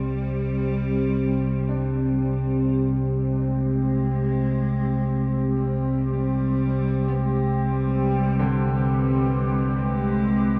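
A rumbling, nasal drone and a moody, detuned pad with chorus begin together in a vast cathedral space, while a woody, bowed cello with vibrato carries an ominous melody through tape echo. From 1.7 s a boxy grand piano, its action noise audible, fades in with arpeggios in the background, its notes also trailing tape echo. The result is a slow, unsettling dark ambient drone heard as a short cut from a longer piece.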